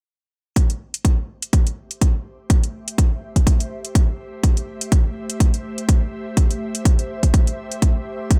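A dry mix sets a punchy kick up front, its tape-warm weight carrying the resonance of a large room. This bass house excerpt, cut from a longer piece, runs at 124 BPM in 4/4 with a 56% swing on the sixteenths, giving it a bouncy, aggressive feel in A minor over a single Am chord. The layered electronic kick and metallic hi-hats enter together at 0.6 seconds and drive the groove through to the end, the hats sitting well beneath the kick in level. From 2.3 seconds an ethereal, airy pad fades in quietly, spanning A3 to E5 with a slow attack and long release. Built from detuned sawtooth and triangle voices in unison with a noise layer, it is mellow and softened by ensemble chorus, built-in reverb and a phaser, while sidechain pumping makes it breathe against the beat.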